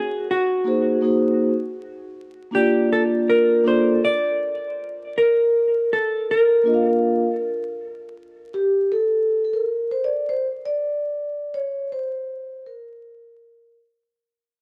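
A clean, dark-toned vintage hollow-body jazz guitar opens this smooth hip hop excerpt, picking out an up-front melody touched with analog delay. At 0.6 s a soft-mallet vibraphone joins in accompaniment, its metallic, ringing tone mellow and airy with the motor off. The slow 80 BPM groove in 4/4 carries a 16th-note swing, and the harmony moves from Eb minor to Bb in a Bb major setting. The guitar drops out at 8.1 s, and from 8.5 s the vibraphone carries on alone as the music fades out. A moderate plate reverb, vinyl crackle and a dark, warm production give the whole excerpt a smooth, mellow glow.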